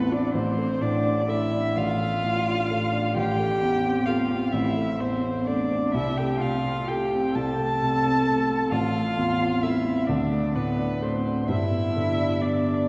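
A muted violin carries a veiled, distant bowed melody over a dark-toned, smooth-topped muted cello's second line and a baby grand piano's long-sustaining accompaniment in this melancholic, solemn classical piano trio movement, unfolding in a rubato 6/8 and bathed in a lingering church reverb.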